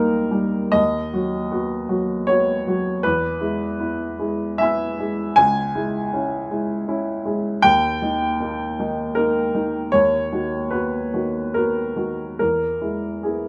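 Intimate and hopeful, this fragment of a longer neoclassical minimalist piano piece unfolds in B major at a rubato 70-82 BPM in 3/4, with a solo upright piano, woody, polished and up front in light reverb, ranging from C#2 to E6 as it moves through D#, B/D#, E and C#m harmonies before circling back to E at 12.4 seconds.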